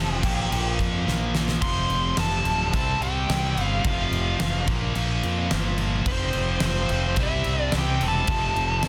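Menacing and driving, this hard rock passage at 108 BPM in a straight 4/4 opens with a nasal lead guitar melody through a parked wah, overdrive and tape echo, shadowed by a very quiet, biting second lead line. Beneath them, a double-tracked overdriven guitar, a cranked stack guitar with phaser and a scooped high-gain distorted guitar churn out bright picked riffs in the background, while a growly, fuzz-drenched fingered bass sits up front. A huge arena drum kit with a fat snare and punchy kick arrives at 0.2 seconds and hits a fill around 1.1 seconds, all within a light small-room reverb and a dense, heavily limited modern master over chords moving through Bb5, F and C5.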